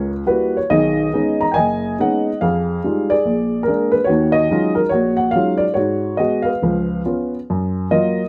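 Swung eighths loosened by rubato carry this brief solo jazz passage, cut from a longer piece, in which a dark upright piano, woody and slightly detuned with its action noise audible up front, covers a broad register over 8.3 seconds and moves through chords such as Gb7b9, Fm9 and Ebm11 before reaching Gbmaj7 at 7.5 seconds, set in light reverb for an intimate, late-night swing.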